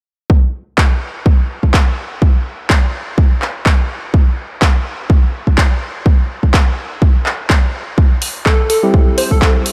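Bass house at 125 BPM with a swung, swaggering and bouncy feel, this excerpt opens at 0.3 s with a punchy, overdriven electronic kick drum sitting up front. An overdriven house drum kit of handclaps and hi-hat joins it, and both kick and kit are re-recorded in a large room. After the harmony arrives on C, a catchy, detuned square-wave unison lead with a noise layer, vibrato, a filter sweep, cassette-tape colour and diffuse ambient delay enters at 8.5 s, followed at 8.8 s by a hollow, dark organ stab with chorus, sidechain pumping and the same diffuse delay, all under light reverb.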